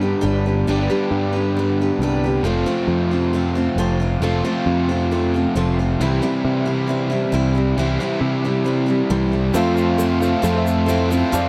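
In a straight 4/4 at 135 BPM, this nostalgic, hopeful folk rock and heartland rock excerpt opens with a bright, full-bodied acoustic guitar with audible finger squeak, a dark, double-tracked overdriven electric guitar riff and a direct picked electric bass moving through G, F and C, before a woody upright piano, a grainy egg shaker in the background and a reedy, breathing harmonium slip in at the shift to Fmaj7 around 9.5 seconds, all captured in a dry, close 1970s-style studio sound.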